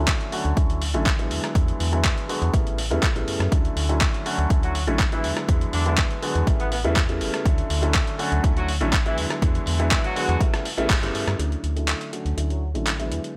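Filtered and sidechain-pumped in a small room, this funky, feel-good disco house excerpt at 122 BPM in D major sets a bright, up-front grand piano with phaser and 12-bit sampler grit over a snappy, metallic-attack FM bass, a dusty, overdriven sampler-style kit of handclaps, rim clicks and pumping hi-hats, and a punchy, layered electronic kick that stops at 11.0 seconds, while a barely audible tambourine enters at 3.5 seconds and a tight horn section with vibrato, octave doubling and dub echo arrives at 4.6 seconds, over a filter sweep through Dmaj7, E7 and A7.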